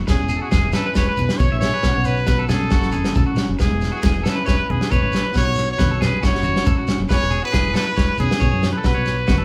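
Sunny and danceable, this short highlife guitar band excerpt moves in a straight 4/4 over a looping progression of E6, Bsus2 and F#m7. A bright, punchy trumpet carries the melody with vibrato and a present, pop-style solo voice, while an electric guitar at the edge of break-up picks twangy arpeggios with a slightly broken-up edge. Beneath them, a fingered electric bass sits dark and round with a foam-muted tone, and a flamenco guitar fingerpicks accompaniment in the background, its finger squeaks audible. The soul drum kit is up front and mid-forward, with a tight kick, medium-tuned snare and rolled-off top, warm in character. Very quiet congas with a thin-skinned, low-tuned sound and soft hands join a grainy, mellow shekere in the background, all heard as a band playing live in one room with moderate studio reverb.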